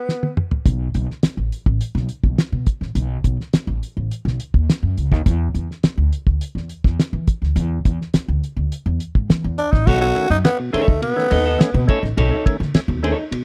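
A straight 4/4 funk groove, energetic and dry, opens with a band accent and drum fill before a thuddy, cloth-damped kit with a fat snare and a woody pizzicato upright bass settle in; a raspy, growling tenor saxophone returns at 9.6 seconds, and from 9.9 seconds a clean, picked electric guitar and a percussive, lightly overdriven tonewheel organ stabbing through a rotary speaker fill out the B9 chord in this close, small-room 1970s-style recording cut from a longer piece.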